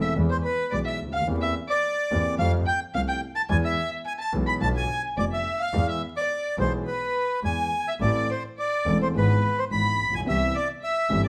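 Tense and melancholic, this rubato tango excerpt at 107 BPM in 4/4 sets a reedy, close-miked bandoneon melody up front over a distant, bowed violin second line full of vibrato and portamento, while a concert grand piano supplies deep-bass accompaniment and a bowed double bass adds a biting, earthy low end, all moving through harmonies centred on E with turns to Bdim, Am and Cmaj7, played live in one large studio room with moderate reverb and vinyl crackle.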